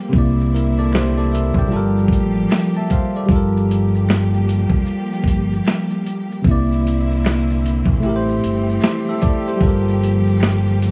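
Melancholic and reflective, this lo-fi hip hop excerpt in G dorian sways at 76 BPM with a swung feel, as a bell-like tine electric piano with cassette-tape character rings up front over a gritty, compressed sampler-style drum kit with a thumpy kick, a round, punchy dub bass, distant lush bowed strings holding sustained chords, and barely audible finger snaps, all moving through C9, Gm9 and Am7 beneath light reverb and vinyl crackle.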